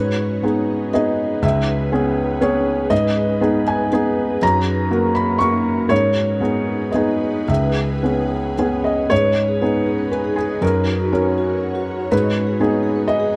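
A felt-muted upright piano opens this fragile, longing neoclassical fragment in G# minor, its boxy, intimate tone sitting up front with audible action noise as it accompanies in a rubato 3/4 at around 110-125 BPM. Beneath it from the very start, an ethereal, airy pad holds slow-attack chords through the G#m, C#m7 and F# changes, softened by ensemble chorus and its own reverb. At 9.1 seconds a vibraphone struck with soft mallets enters in the background with ringing, metallic arpeggios, a medium motor vibrato and tape echo, all captured in a close, detailed recording with little room sound.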